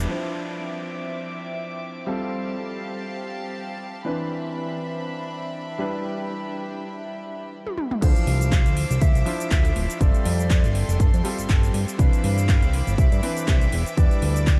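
Cosmic and sleek, this nu-disco excerpt moves at 121 BPM in 4/4 with a light swing on the sixteenths, set in D dorian over a cycle of Dm9, G9sus4, Cmaj9 and Em7 chords. It opens with a polished baby grand piano roughened by vintage 12-bit sampler grit and a diffuse ambient delay, pumping against the sidechain, while a clear, earthy violin section holds sustained bowed chords with light vibrato as a filter sweeps across it. A house kit enters with a drum fill at 7.7 seconds that leads into the drop at 8.0 seconds. There a punchy, up-front electronic kick arrives and the kit carries on with metallic hats, handclaps, shaker, toms and crash, both tape-warm and treated with studio reverb. At the same moment a fat, detuned analog bass takes hold, thick and nasal, with tube saturation adding warmth. Above it all, an airy silver concert flute plays a distant, slightly unsteady melody with a crisp chiff, trailed by delay, and the whole mix sits in a light digital ambience.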